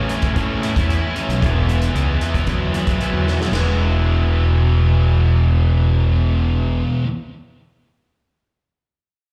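Two picked electric guitars open this upbeat, jangly indie rock excerpt in E major at 113 BPM: a thick, distorted fuzz guitar with analog chorus sits up front, beside a bright, overdriven guitar through a cranked stack. A punchy, round fuzz bass, fingered and up front, carries the low end, and a loose acoustic kit with a tight kick and medium-tuned snare comes in at 0.1 seconds, playing a fill at 3.3 seconds before it stops at 3.7 seconds. The chords move from Amaj7 to Eadd9 and then settle on E, all heard as a live club gig through the venue's PA.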